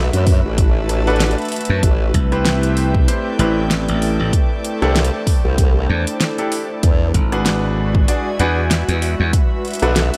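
A swung 96 BPM glitch hop groove in A dorian opens this gritty, funky excerpt, with a punchy, up-front electronic kick layered under a pop kit of fat snare, rim click and metallic hi-hats in a small room. A wobbling, chorused formant-sweep wobble bass holds the low end from the start, joined at 1.7 seconds by a bright, direct slap bass, while a brilliant grand piano stabs chords through delay and sidechain pumping from 1.1 seconds. Behind them, a nostalgic, detuned tape-like pad with 12-bit sampler grit and an airy, breathy pad sustain Bm7, Am9, C69 and E9 chords under a glossy 1980s-style digital sheen.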